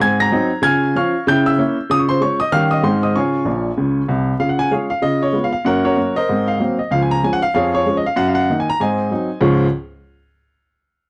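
A clear baby grand piano carries this playful, exuberant stride jazz fragment on its own, sounding from 0.0 to 9.7 seconds and ranging from Bb1 in the bass up to Bb6. Set in a swung 4/4, the piece moves at a brisk, buoyant clip through bright changes such as Ab7, Db, Dbdim7, Eb7, Gb and Ab9 before coming home to Db at 9.4 seconds. A short piano fill at 3.5 seconds marks the close of the opening phrase and leads into a fresh run of harmony. The instrument sits up front with an intimate, natural character, long sustain and audible action noise. The dry, close 1970s-style studio sound carries only a light touch of reverb.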